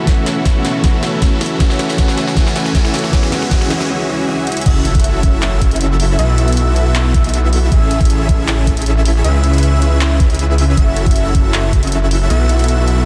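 Future bass at 157 BPM in a half-time feel, playful and euphoric, this excerpt opens with a build-up where a dark, mellow piano and very quiet bowed strings sit under a huge, compressed supersaw riff with pumping and tape echo, while a big-room kit with a huge snare rolls through a fill over a knocking, up-front kick and a riser climbs toward a short break. At 4.7 seconds the drop hits with an impact as a thick, detuned saw bass takes the low end and an airy, dreamy lead plays soft arpeggios in the background, all riding a chord cycle of B7sus4, Amaj7, C#m7 and F#m7. The mix is dense and heavily limited with light reverb.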